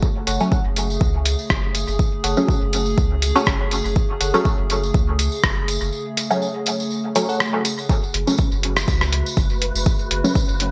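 A muted, detuned filtered dub chord stab sits up front in this nocturnal, hypnotic dub techno fragment, its short plucked hits colored by phaser and trailed by dub echo. Beneath it, a warbly, nostalgic tape-like pad holds sustained chords with chorus and a slow attack, while a round, soft sub bass anchors the low end, both breathing with sidechain pumping. The rhythm comes from a deep, layered electronic kick, a compressed, pitched-down lo-fi sampler-style kit of hi-hat and rim click with gated reverb and dub echo, and a jingly acoustic tambourine, all with a lightly swung 16th-note feel. A crisp, vintage-sounding wavetable chord stab with a moving notch adds higher accents until 4.3 seconds, returning briefly around 7.3 seconds, and the kick drops out from 5.9 seconds before returning. An airy, breathy wind-like noise texture drifts in at 8.5 seconds. The production is bright and 1980s-style digital, set in light reverb.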